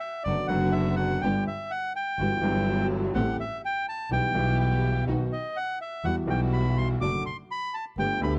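A reedy bandoneon opens this dramatic, tense tango at 0.0 seconds, carrying the melody smoothly and up front in its upper register. By 0.3 seconds a clear grand piano with long sustain joins in accompaniment, and a single bowed double bass sounds focused, with vibrato, beneath it. A dark string section plays sul tasto stabs in the background, bowed with soft attacks and light vibrato for an intimate ensemble sound. The pulse sits around 124 BPM in 4/4 but is played rubato. The harmony moves through E minor, passing chords such as Am7 and B. The sound is dry and close, like a 1970s studio recording, and this short cut from a longer piece ends at 8.4 seconds.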